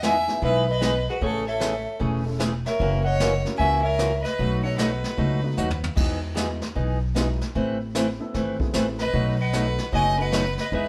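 Playful and down-home, this western swing cut from a longer piece moves at 152 BPM, with a clean, fingerpicked lap steel carrying the melody on slide beside a clear, focused fiddle second line with light vibrato, both dropping out from 5.8 to 9.0 seconds as a brushed drum fill lands at 5.6, over a boxy ladder-braced acoustic guitar with audible finger squeak, a woody, thumpy gut-string upright bass sitting up front, a vintage brush kit with a punchy kick and dark cymbals, and a mellow upright piano tucked in the background, the band playing live in one room with moderate studio reverb through chords running from Emaj7 to B7.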